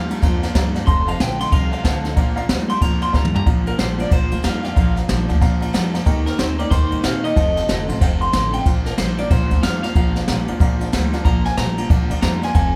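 A live-in-one-room sound with light reverb carries this rowdy, upbeat rockabilly excerpt in Bb major, swinging at 185 BPM in 4/4 as it moves through Bb, F7 and Eb changes. A bright, lo-fi, twangy electric guitar through a small old amp takes the melody, while a second slightly broken-up electric guitar plays a low riff with vibrato over a woody, thumpy pizzicato upright bass on gut strings and an up-front brush kit with punchy kick, high-tuned snare and dark cymbals. A full-bodied dreadnought acoustic guitar and a worn, slightly detuned upright piano sit in the background, and a drum fill at 3.1 seconds leads into the next section at 3.5 seconds.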